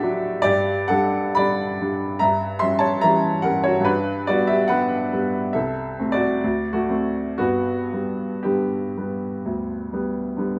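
Passionate and hopeful, this brief excerpt of a romantic classical character piece for solo piano unfolds with a rubato feel, its bright, brilliant baby grand heard from further back in a large studio, wrapped in a wet reverb, as the harmony moves from G through a diminished colour and a D7 before settling home on G.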